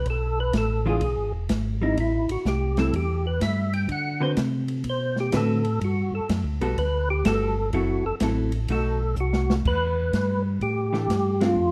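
Soulful and smoky, this soul jazz organ trio swings at 125 BPM in 4/4 in E minor. It's a short cut from a longer piece. A percussive tonewheel organ carries the melody and solos from the start until 9.7 seconds, its fat, clicky voice shaped by chorus vibrato and a slow rotary speaker. Beneath it, a second, mellow tonewheel organ holds down the bass with a round, dark tone through its own slowly turning rotary speaker, both organs sitting up front. A vintage hollow-body jazz guitar enters at 0.9 seconds with clean, picked, compressed accompaniment. An open acoustic drum kit with dusky cymbals, a boomy kick and a rolled-off top adds a fill just before the harmony settles on Em7, and the band lands an accent at 11.3 seconds, all in a lightly reverberant small room.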